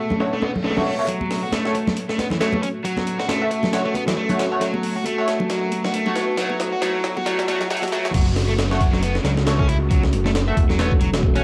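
A swung, gritty breakbeat groove from a compressed, sampler-style kit with a thumpy kick and high-tuned snare drives this raw, dark excerpt alongside bright, hard-hand congas, an overdriven semi-hollow guitar riff with tube saturation and dub echo that opens under a filter sweep, nasal band-passed chord stabs with phaser and lush chorus, a deep, moody pad pumping in the background, and very quiet electronic risers and a reverse cymbal. The build-up runs through a drum fill until a fat, detuned analog sawtooth bass arrives up front at the drop at 8.1 seconds, all over a bed of vinyl crackle.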